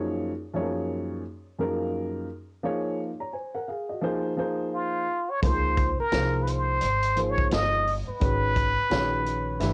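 Jazz-hop with a cool, smooth mood at 86 BPM in Db major, this piece from a longer work swings its 16ths over chords such as Gbmaj7 and Dbmaj9. A dark, mellow baby grand piano plays intimate accompaniment from the start, with audible action noise, and a clear trumpet with a plunger mute enters at 4.7 seconds, carrying the melody with a wah-wah tone, light vibrato and scooped notes. At 5.4 seconds a woody, thumpy pizzicato upright bass and a vintage drum kit with a punchy kick join in, and the cassette tape on the piano, trumpet and drums, the small room ambience and the rolled-off top end give it a homemade feel.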